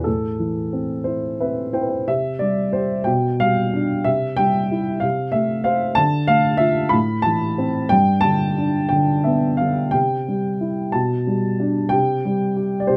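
In a rubato 6/8 lilt of 58-65 BPM counted in dotted quarters, this melancholic, wistful excerpt of lyrical classical solo piano in C major centres on a dark, woody upright piano placed up front with long sustain, heard through close, detailed microphones and light reverb, which plays a brief fill at 1.1 s before a new section begins at 2.1 s and the harmony moves from Am through Fmaj7/C, Dm and G to come back to C.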